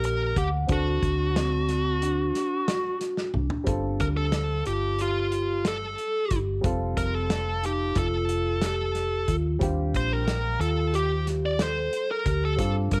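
Lightly reverberant, this brooding, intricate slice of progressive instrumental band music in 9/8 puts a distorted, bluesy lead guitar up front over a round, hollow-body fingered electric bass, a muffled, lo-fi indie drum kit with a punchy kick that plays a fill from 3.2 to 3.7 seconds leading into the second section, ringing soft-mallet vibraphone arpeggios, and a worn, dark grand piano in the background with audible action noise, while the harmony moves from Gm/Bb and D7 through Gsus2 and F7 to Ebmaj7.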